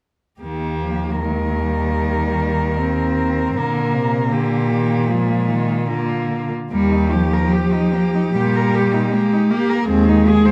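Close, detailed microphones in a moderately reverberant recital hall capture this tender, lyrical classical passage for four bowed cellos at 76 BPM in Eb major with a rubato feel; from 0.4 to 10.5 s, a dark, expressive cello sings the melody with vibrato and portamento, a rich, smooth second cello sounds more distant, a focused cello carries the accompaniment with a smooth top and slightly more weight, and an up-front, soft-attacked cello anchors the bass with warm vibrato and portamento.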